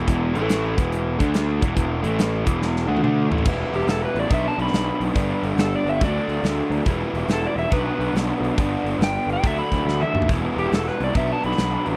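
A raw, double-tracked garage guitar riff opens this smoky, heavy blues rock piece, overdriven and lo-fi, alongside a growly fuzz bass played with a pick and placed up front. A big acoustic rock kit joins at once, with a punchy kick, a medium-tuned snare, toms and bright cymbals. The tempo is 141 BPM in 4/4 with a swung eighth-note feel in E minor, and the opening bars ride on power chords until a drum fill at 2.6 seconds leads into a passage cycling through Em, Bm, G and D. At 3.8 seconds a dark, overdriven slide guitar enters with the melody in a high register, lending a southern rock edge. Small room ambience frames a dry, close 1970s-style studio sound, and another drum fill arrives at 9.9 seconds before this cut from a longer piece ends.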